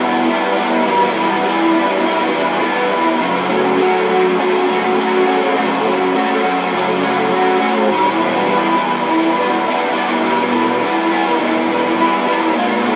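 A raw, lo-fi garage guitar, overdriven and double-tracked, sits up front with chorus and analog delay as it plays alone for the full 13.0 seconds of this brooding, hazy rock fragment, its picked lines moving between Em and F#m inside a dreamy mix soaked in a huge ambient reverb.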